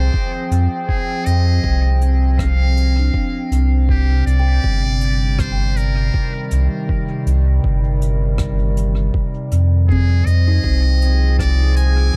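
A round, deep sine sub bass sits up front in this hazy slice of ambient dub cut from a longer piece, beneath a muffled, thumpy pitched-down electronic kick, a faint airy brush kit of hi-hat and rim click trailing dub echo, and a warbling, nostalgic lo-fi pad with chorus and built-in reverb, while a buzzy, thin trumpet with metal mute carries the solo melody through dub echo and a woody, ringing kalimba enters at 2.4 s with background arpeggios through analog delay, all in a small, echo-heavy room.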